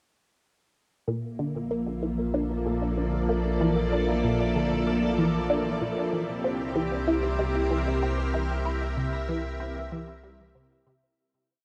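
Expansive and cosmic, this short ambient space-music piece moves at 95 BPM in Bb lydian, shifting from Bbmaj7 to C7 at 6.1 seconds. A lush, vintage string machine holds up-front sustained chords through phaser and ensemble chorus. A squelchy, resonant blip pluck runs a five-step sequenced riff that drifts against the bar, colored by phaser, analog chorus and tape echo, over a round, deep analog bass on sustained roots; far back, a bubbling stepped-filter texture fades in on a held high note with chorus and its own reverb, all set in a huge ambient space with cassette-tape character before the piece fades out from 7.8 seconds.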